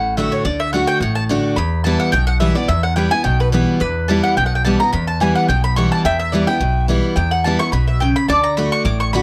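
A full-bodied picked dreadnought guitar with audible finger squeak, an up-front, woody, double-strung mandolin soloing in stabs, and a thumpy gut-string pizzicato upright bass open this driving, rustic, swung bluegrass piece over D and E minor chords, before a bright, nasal lap resonator guitar, played with fingerpicks and slide, adds a metallic second line from 3.8 seconds, all in a lightly reverberant, closely miked and detailed sound cut from a longer piece.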